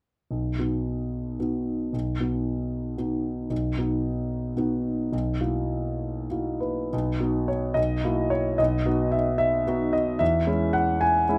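A warm concert grand piano, intimate and up front with deep bass and audible action noise, plays alone in this hopeful romantic character piece in 6/8 with free rubato, moving into a new section at 6.9 seconds before the brief fragment of a longer work ends at 11.4 seconds, all captured by close, detailed microphones in light reverb.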